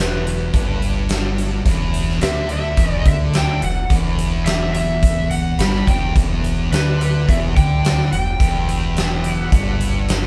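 A gritty, brooding blues rock power trio cut with a southern rock edge, this fragment of a longer piece sits on E minor at 107 BPM in a straight 4/4, driven by a huge, up-front arena drum kit with a fat snare and punchy kick, a thick, bright, double-tracked fuzz guitar riff, and a growling, overdriven fingered bass, while an overdriven slide guitar carries the melody up high and a very quiet, percussive tonewheel organ with key click and slow rotary speaker slips in with sustained chords at 6.2 seconds, all captured as a band playing live in one room with moderate reverb.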